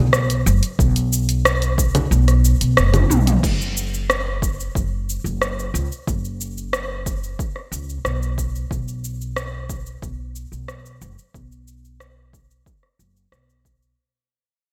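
A straight 4/4 groove drives this sunny, relaxed sunset chillout cut, where a woody pizzicato upright bass sits up front beneath a dark-hatted deep house kit of cabasa, congas, hi-hat, rim click, toms and crash cymbal with gated reverb, plus a punchy electronic kick that drops out at 2.1 seconds as a drum fill leads into a long fade-out from 3.4 seconds, while a filter sweeps the bass in a bright 1980s-style digital production with light reverb.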